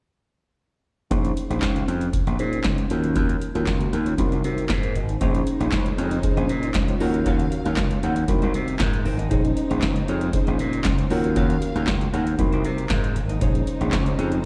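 A gritty, overdriven slap bass sits up front in this danceable, late-night stretch of early-eighties boogie funk, driven by an electro analog drum machine with a deep kick, punchy snare, metallic hats and handclaps, while a mellow, round FM electric piano with chorus and slapback echo plays over minor chords and adds a brief fill at 12.4 seconds. At 5.2 seconds a smooth, bowed studio string section adds sustained chords in the background and a clean electric guitar riff with subtle chorus joins, followed at 5.7 seconds by a crisp group handclap that is barely audible. The sound comes across like a live gig heard through the venue's PA, with recital hall reverb and lossy compression artefacts.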